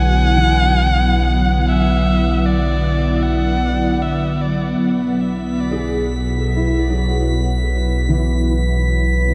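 Ambient music in a reflective, spacious mood, moving at 76 BPM in 3/4 and set in B minor, heard as a brief cut from a longer piece. An electric violin carries the melody between D5 and F#5 for the opening 4.8 seconds, its bowed tone expressive with vibrato and portamento and trailed by delay. Beneath it a glassy FM pad holds slow-attack chords with ensemble chorus, phaser and its own reverb, while a felt-muted upright piano plays soft, intimate arpeggios in the background through chorus and delay. A round sine sub bass sits up front on a low B, and an overtone-sweeping drone fades in from 0.2 seconds, detuned and resonant behind the other parts. The harmony shifts from Bm to Asus2/B at 4.8 seconds, and at 5.5 seconds a bright, drifting glass-harmonics texture enters high on B6, all within a dreamy mix soaked in a huge reverb with a 7.4-second tail.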